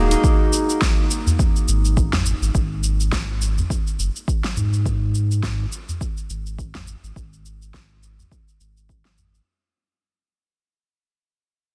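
Meditative and warm, this organic downtempo fragment, cut from a longer piece, opens with bright, ringing fingerpicked concert harp arpeggios bathed in tape echo that fall away at 3.2 seconds, over a deep, round sine sub bass that sits up front with sidechain pumping. A punchy, layered electronic kick anchors the groove alongside a produced deep house kit of hi-hat, shaker and fat snare, swung on the 16ths, while a small, close acoustic udu joins at 1.3 seconds. The sound is a small room with a dense, heavily limited modern master, and the whole passage fades out from 0.2 seconds on.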